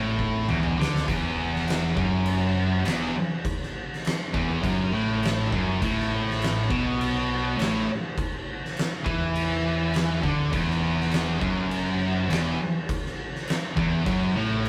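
A straight 4/4 pulse at 102 BPM drives this sludgy, brooding stoner and doom metal passage, cut from a longer piece. The oversized, low-tuned drum kit enters at 0.2 s with a fill that runs to 1.1 s, its punchy kick, fat snare, toms and dark crash cymbals sitting up front with a gritty, pumping room sound. A double-tracked, bright high-gain guitar leads the riff, backed by two thick fuzz guitars, one murky and set further back, and by a round, overdriven fingered bass, all moving from E5 to Esus24, then A5 at 5.8 s, inside a rough rehearsal-room recording with stone reverb and saturation.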